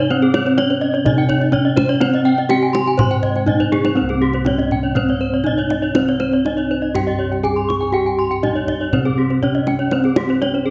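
A bronze metallophone carries the melody, struck with a wooden mallet and close-miked, its paired tuning giving a dry, full ring with shimmering beats, while two more metallophones played with horn mallets spin arpeggios around it, one bright and airy, the other boxy. This shimmering, brilliant Balinese gamelan excerpt moves at 121 BPM in C pelog, anchored by round, beating bossed gongs with a vintage, band-limited tone and by a tight, close kendang. A moderate recital hall reverb surrounds the ensemble, and a kendang fill at 3.6 seconds leads into a new section at 4.0 seconds.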